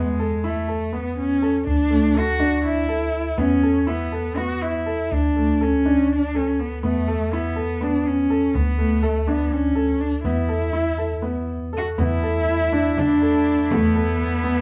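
A rich, bowed solo cello carries the melody up front with vibrato, portamento and a soft attack, over boxy grand piano arpeggios with long sustain and a worn, slightly out-of-tune tine electric piano holding the bass, all moving between Esus4, Dsus2 and D5 chords. This restless, playful contemporary chamber piece runs in a straight 7/8 at 245 BPM in eighths, heard from further back in a wet studio reverb. At 12.0 seconds a clear, distant woodwind section adds sustained classical-style chords with light vibrato, and a close, dry frame drum sits in the background as the harmony lands on E7sus4 before this fragment of a longer piece cuts off.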